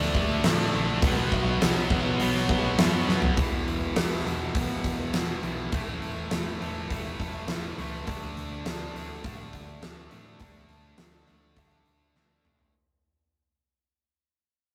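Swaggering and anthemic, this hard rock excerpt struts along at 102 BPM in a straight 4/4, cut from a longer piece. A huge arena drum kit sits up front with a fat snare and punchy kick, rolling through fills at 3.1 seconds and again at the close, while a dark, round hollow-body short-scale bass anchors the low end. Three guitars carry the riff: a bright, cranked stack guitar tucked in the background, a sludgy overdriven guitar, and a scooped, double-tracked high-gain guitar that drops out at 3.4 seconds along with a gritty, percussive tonewheel organ holding sustained chords with key click and chorus vibrato very quietly beneath. From there the second section moves through E5, A5/E and D5 power chords as the whole mix fades out. The rough rehearsal-room sound carries tube saturation and a moderate small-room reverb.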